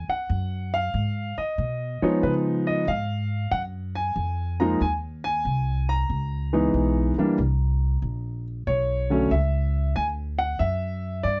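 A grand piano carrying the melody and a pizzicato upright bass play together from the very first second in this smoky, moody swung jazz fragment, the piano intimate with audible action noise and long sustain and the bass woody and thumpy, both up front in a dry, close 1970s-style studio sound as the harmony moves through G#m, C#9 and F#maj13 toward Bmadd9.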